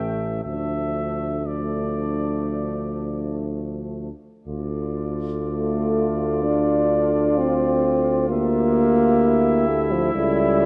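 A dark, warm production with a moderate scoring-stage reverb frames this short, yearning cut from a longer classical hymn-like piece for brass band, unfolding in a flexible, rubato 4/4 as the chords move from Dm through Em7b5/D to A7/C# near 10.1 seconds. A mellow cornet with a soft attack and light vibrato carries the melancholic melody, while a shadowy, vintage-toned French horn section holds a second line in the background. A bright, tight trombone section and a prominent euphonium supply the accompaniment, and a warm, roomy tuba anchors the bass.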